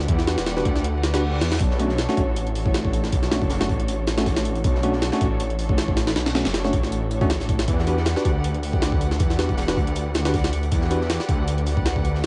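Drum and bass in a jungle vein, this nostalgic yet frenetic passage pairs a gritty, pitched-up sampler drum kit with a thumpy kick and a thick, menacing detuned saw bass up front, beneath veiled con sordino strings holding sustained chords and bell-like electric piano stabs with dub echo in the background, while a reverse cymbal enters at 1.0 seconds and a very quiet, dark breakbeat kit with a high-tuned snare joins at 1.6 seconds, all framed by small-room ambience and vinyl crackle.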